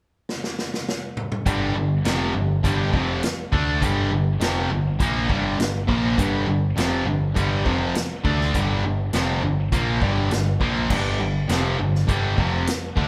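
A live band sound in one room, soaked in large studio reverb, carries this brooding, driving classic rock excerpt in G minor at 102 BPM, where a vintage drum kit with a tight kick and rolled-off top opens with a fill from 0.3 seconds before, at 1.5 seconds, a bright distorted guitar, an up-front double-tracked overdriven guitar and a crunchy overdriven guitar in the background all enter playing a riff, joined by a growling picked bass with overdrive, over a steady G minor chord.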